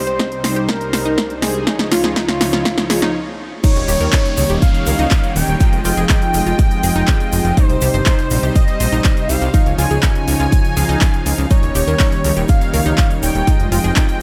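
A punchy electronic kick drum sits up front in this dreamy, emotional progressive house excerpt at 122 BPM, where a thick, bold unison lead with vibrato and dub echo rides over a warm analog pad with chorus and sidechain pumping, smooth soft supersaw stabs, a bright, round analog pluck arpeggio in the background, a layered big-room dance drum kit with crisp hats, and a very quiet electronic riser and downlifter through the build-up and drum fill. After a stop at 3.1 s, the drop at 3.6 s brings in a dark, intimate violin section, a gritty, very quiet breakbeat sampler-style drum kit and a grainy, distant tube shaker, with a funky, plucky analog bass following at 3.8 s, all cycling through Cm, Dbadd9, Eb7 and Fm7 in a nearly dry mix.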